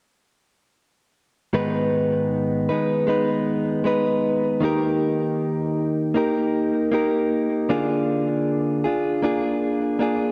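A clean electric guitar, recorded direct and compressed, sits up front as the only voice in this short melancholic pop excerpt, playing solo from 1.5 to 10.3 seconds. Its picked notes span from low G#2 up to B4, and an analog delay trails behind them. The guitar moves through G#m, then D#, and lands on A#7/D around 7.7 seconds, giving the phrase an emotional pull. A lush hall reverb soaks the dreamy mix, and a cassette-tape character colors the slow, steady pulse in four.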